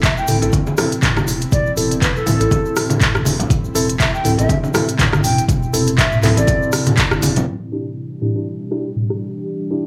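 Afro house at 121 BPM with a hypnotic, spiritual mood, in this excerpt an airy bansuri with tape echo and vibrato carries the melody over a detuned, ethereal pad, a dark sawtooth synth bass and a deep electronic kick, with the pad and bass pumping to the sidechain, while an up-front afro-pop kit of handclaps, smooth hats, rim click and filtered toms plays alongside hard-handed congas and a grainy egg shaker in the background, and a felt-muted upright piano with audible action noise adds soft, echoing stabs from 0.3 seconds, with a filter sweep on the drums and piano from 7.5 seconds marking the move from Am to Em7.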